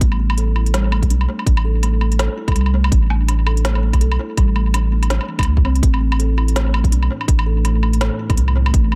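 The mix is echo-heavy under a light reverb, giving this short cut from a longer piece a heavy, cinematic atmosphere. It is half-time drum and bass at 165 BPM in A minor, with a swung sixteenth feel over a single Amadd9 chord. Up front, a hard-clipped electronic kick drives the beat beside a thick, saturated triangle sub bass with a fast attack and sustained notes. A tape-warm electronic kit, re-recorded in a small room, adds a woody snare, crisp hi-hats and woodblock through analog delay. Over this, a soft, hollow-box kalimba plays mellow fingertip-plucked arpeggios treated with dub echo. From 7.1 seconds, a dark, detuned sawtooth pad with a sub octave sits in the background, its slow-attack sustained chords treated with chorus, reverb and sidechain pumping.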